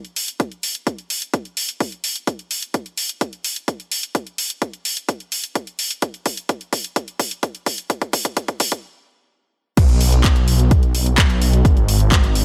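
A house drum kit of crash cymbal, handclaps and bright, overdriven hi-hats opens this anthemic, powerful festival progressive house excerpt at 128 BPM, joined almost at once by a punchy, layered electronic kick up front in a digital ambience. The build-up carries a long drum fill before a brief stop at 8.8 seconds. At the drop at 9.8 seconds, a thick, lush detuned saw bass with chorus and sidechain pumping arrives, saturated and sustained in the low register.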